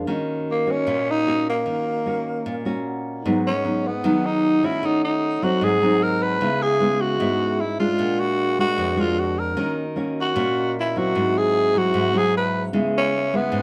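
A moderate studio reverb gives this short bossa nova cut from a longer piece a sense of room, with the tenor saxophone and nylon-string guitar sitting up front and the vibraphone held in the background. At 152 BPM in a straight 4/4, the mood is wistful and melancholic, opening in Eb minor before moving to G# minor at 3.3 s. The thumb-plucked classical guitar offers a warm acoustic accompaniment, while the soft-mallet vibraphone, played with its motor off, adds a ringing, metallic shimmer and a brief fill from 2.5 s. From 0.5 s the tenor saxophone carries the solo melody in a jazz style, its breathy subtone and vibrato colored by a raspy, gritty growl, with scooped notes, soft attacks and a smooth top end. Minor seventh chords lead into altered dominants and a half-diminished chord, giving the harmony a searching, bittersweet pull.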